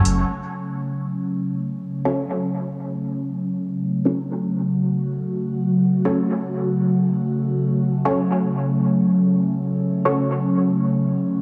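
An airy, breathy pad opens this nocturnal, cavernous techno excerpt at 120 BPM in F# minor, holding soft, detuned sustained chords through chorus and phaser while a filter sweep moves across it from 0.3 seconds. At 2.1 seconds a muted, dark dub chord stab enters with a fast pluck and short decay, its detuned sawtooth and square tones thickened by a sub octave and sent through phaser and dub echo. The echo-heavy mix sits in a moderate echo chamber reverb with small room ambience, resting on a single F#m chord.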